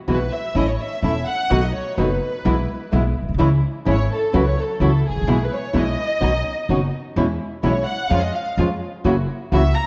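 Tango excerpt at 127 BPM in E major with a sultry, melancholic rubato feel. A lush, dark violin section sings up front with vibrato over fingerpicked nylon-string guitar with audible finger squeak, veiled con sordino string stabs in the background, and a woody pizzicato upright bass. All of it sits in a moderate concert hall reverb that gives the production a warm glow.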